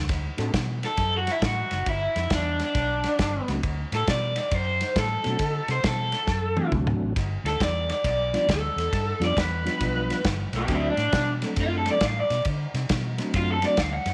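An overdriven, lo-fi garage guitar with a phaser leads this gritty, soulful electric blues shuffle excerpt at 136 BPM in D mixolydian, backed by a dark, foam-muted fingered bass, an up-front soul drum kit with dark cymbals and a drum fill at 6.3 seconds, and a flute-like tonewheel organ with key click and slow rotary speaker entering fully at 3.5 seconds, all in light studio reverb.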